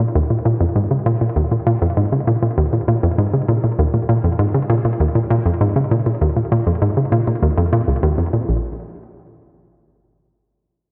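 A hollow, detuned square-wave pluck plays alone and up front from the start, its bouncy, mellow notes moving between Bb1 and Db3 with chorus and delay, in this mysterious, cosmic ambient fragment in Bb minor at 99 BPM, set in a lush hall reverb that soaks the dreamy mix until the pluck stops at 8.8 seconds.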